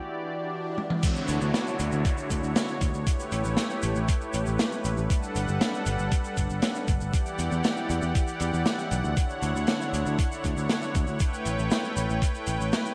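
Synthwave with a dreamy, uplifting mood, this short cut opens on a soft-attack, detuned sawtooth pad with chorus and sidechain pumping, sustaining chords while a background swell and downlifter drift by and a drum fill at 0.8 seconds leads in. From 1.0 seconds a thumpy, tape-tinged electronic kick anchors an acoustic jazz kit of dark cymbals, medium-tuned snare, hi-hat, shaker and toms under gated reverb, joined by a round, punchy overdriven picked bass that also carries sidechain pumping. Chords move through Dmaj7, A7, Gmaj7 and Em7 within a bright 1980s-style digital sheen and a moderate plate reverb.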